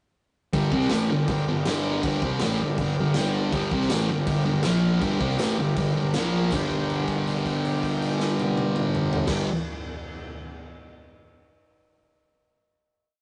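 Menacing and gritty, this complete garage rock piece in G minor charges along at 160 BPM in a straight 4/4, with a thick, double-tracked fuzz guitar riff up front from 0.5 seconds, a punchy overdriven bass driving eighth notes that double it, a raw, saturated drum kit with crash, kick, snare and toms in a bright stone room, a reedy vintage combo organ holding background triads with a fill at 2.8 seconds, and a distant jingly tambourine until 6.7 seconds, all captured as a rough rehearsal-room recording that settles onto a final held G minor chord at 6.5 seconds.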